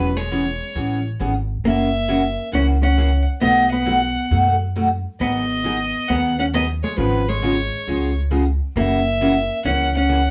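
Swung eighths in 4/4 give this cheerful country excerpt its easy lilt, with a small band playing live in one room under moderate studio reverb as the harmony moves from E6 through F#7, B7, G#m7 and C#7/G#. Up front, a clear, smooth bowed fiddle carries the melody with light vibrato, while a dark, clean, compressed hollow-body electric jazz guitar picks a second line beneath it. A bright, full-bodied steel-string acoustic guitar supplies picked accompaniment, and a woody, thumpy pizzicato upright bass on gut strings sits prominently at the bottom.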